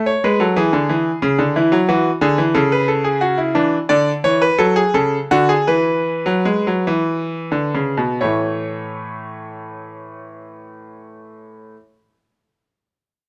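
A bright, up-front concert grand piano plays a joyful, elegant baroque-style two-part invention alone in A major and straight 6/8 at 42-60 BPM in dotted quarters, its brilliant treble and deep bass spanning A2 to D5 and easing into a slowdown from 2.6 to 8.2 seconds as the harmony moves through E7, F#m and Eadd9 back to A, all captured close and detailed with light reverb in this passage cut from a longer piece.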